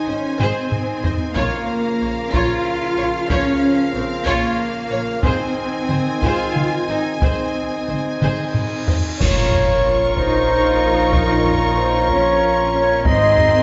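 Epic and dark, this cinematic orchestral excerpt in a straight 6/8 sets a lush violin melody over a second violin line, clear violas, rich cellos and distant double basses, while bright trombones, dark French horns and a full pipe organ sustain chords. Heavy-sticked taiko drums pound from 0.4 seconds, and a cymbal swell, clash cymbals and concert bass drum join at 5.2 seconds. A huge swell-and-impact effect rises from 8.4 seconds, and an airy silver flute and roomy trumpet stabs arrive with a band accent at 9.2 seconds, all washed in a wet scoring-stage reverb.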